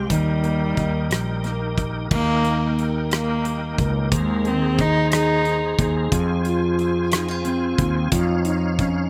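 A dramatic, aching six-eight pop ballad opens with a single bowed cello carrying the melody, played sul tasto with light vibrato and a smooth, intimate tone that sits close and up front. Beneath it, a fingerpicked jumbo steel-string acoustic guitar with fresh strings gives full-bodied accompaniment, double-tracked and touched by slapback echo. A tonewheel organ holds sustained chords with audible key click, chorus vibrato and a fast rotary speaker, while a fretless electric bass adds a dark, round low end, direct and amped. A huge arena drum kit arrives at 0.1 seconds with bright crash cymbals, hi-hat, rim click and a punchy kick, its hall sound set against an otherwise dry, outdoor recording. The cello drops out at 5.8 seconds, leaving guitar, organ, bass and drums to carry the harmony through Fm and Dbadd9/F to the end of this fragment of a longer piece.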